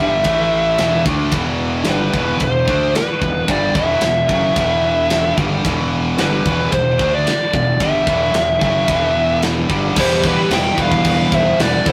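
Heavy and aggressive, this short heavy metal excerpt in E minor drives at 111 BPM in a straight 4/4. A dark, high-gain lead guitar carries the melody up front over two bright, picked distorted guitars playing the riff in the background, a growly, punchy fuzz bass, and a tight metal drum kit with bright cymbals and a tight kick that enters at 0.2 seconds. At 10.0 seconds a smooth overdriven second lead line and a double-tracked, crunchy rhythm guitar join, all in a rough rehearsal-room sound with light reverb and warm saturation.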